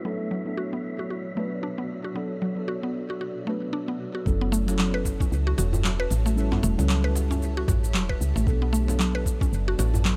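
A round, woody FM bass sits up front in this hypnotic, warm piece of organic downtempo, arriving at 4.3 seconds with a mellow, decaying tone that pumps against the kick. The piece moves at 114 BPM in 4/4 with a 58% swing on the 16ths, in B minor, and this short cut from a longer track moves through Bm7, F#m7 and A7 before returning to Bm7. Before the beat lands, muted, intimate felt-like synth keys and a percussive mallet-like pluck play arpeggios and accompaniment, both treated with chorus and digital delay, while the pluck and a cloudy, blurred granular pad each carry a filter sweep. An airy, breathy wind-like texture lingers in that opening stretch, bathed in its own reverb, as the evolving pad holds sustained chords throughout. At 4.3 seconds a soft, tape-toned electronic kick, shaker and handclaps come in with a small-room character, the kick dropping out at 9.5 seconds, and a hard-handed, vintage-sounding djembe joins in the background. 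The overall sound is dry and close, with the pumping pulse of the keys, pad and bass giving the groove a gentle breathing motion.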